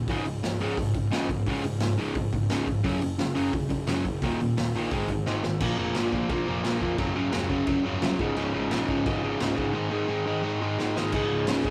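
Punk rock at 174 BPM in Db major, upbeat and rowdy, cut from a longer piece, with a crunchy, double-tracked overdriven guitar riff up front, bright and picked, over a fuzzed, overdriven picked electric bass sitting in the background. A raw garage drum kit drives it with a boomy kick, medium-tuned snare, dark cymbals and a gritty, saturated small-room sound with a rolled-off top, adding drum fills at 5.3 and 10.8 seconds to close each of its two halves. The whole rough rehearsal-room recording carries light reverb and tube saturation, and the chords move from Db5 through Gb5, Eb5, Ab5 and Bb5 before returning to Db5.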